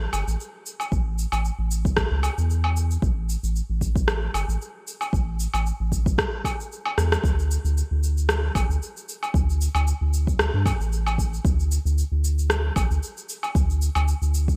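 Organic downtempo with a mystical, earthy mood, this excerpt from a longer piece sets a round, dark analog bass with a filter sweep up front, joined almost at once by a tape-tinged electronic woodblock, cabasa and rim click bathed in gated reverb and, from 0.9 seconds, a deep, layered electronic kick drum. A drum fill at 7.0 seconds leads into the second section at 7.2 seconds, and the whole carries a light reverb and bright 1980s-style digital production sheen.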